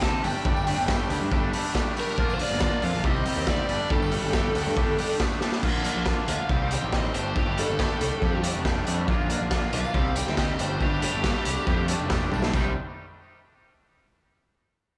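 Indie rock with a cool, restless edge, this brief excerpt from a longer piece moves at a brisk, straight four-beat pulse over a chord cycle of Gsus2, Bb and Cm. A raw garage drum kit sits up front with a punchy kick, medium-tuned snare, dark cymbals and toms, its pumping small-room sound saturated and gritty with a rolled-off top. A growly fuzz bass, bright and overdriven, anchors the low end, while an overdriven rhythm guitar riffs in the background beneath a clean, twangy fingered guitar bathed in lush chorus and digital delay. A biting lead guitar, overdriven and trailed by delay, carries the melody and takes a solo from 5.6 seconds, with drum fills marking the turns at 5.4 and 12.3 seconds. A very quiet, jingly tambourine sits distant in a large room, dropping out briefly before returning at 9.1 seconds, and the whole mix has a blown-out, overdriven character with light reverb.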